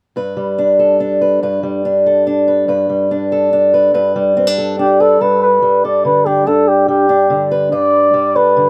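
Anthemic and hopeful, this brief indie folk excerpt in G major moves at 143 BPM in a straight 3/4, opening on a Gadd9 as an up-front fingerpicked acoustic archtop guitar, warm with audible finger squeak, sets the accompaniment from 0.2 seconds before a dark, veiled bucket-muted trumpet enters at 4.8 seconds to carry a classical-style solo melody with light vibrato and a distant, roomy cast, the arrangement building through to 8.7 seconds in a dry outdoor setting.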